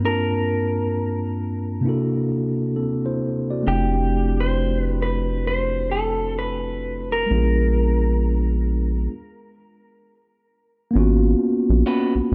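A slightly broken-up, lo-fi electric guitar through a small old amp carries the melody with spring reverb over a mellow, clean tine electric piano, opening this late-night, smooth R&B excerpt at a slow 66 BPM with a swung 16th-note feel over chords moving from Gm7 to C13 and F69. A rubbery, hollow square-wave bass with a fast, decaying filter pluck enters up front at 3.7 seconds. After a stop from 9.1 seconds, the harmony shifts to G#m11, and a brief picked second guitar line appears at 11.9 seconds, all within a dark, lightly reverberant production.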